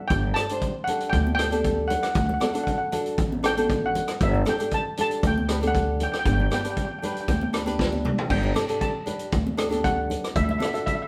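A live-in-one-room sound with wet studio reverb frames this bouncy, sunny calypso, cut from a longer piece and moving at 117 BPM in G major. Up front, a shimmering lead steel pan played with hard rubber sticks carries the melody, while a fingerpicked flamenco guitar with audible finger squeak supplies accompaniment over a woody, thumpy pizzicato upright bass on gut strings. A street-band drum kit with a boomy kick, dark cymbals and a rolled-off top sits forward and plays a fill from 7.8 to 8.3 seconds, and ringing, high-tuned congas join close and dry in the background at 0.9 seconds.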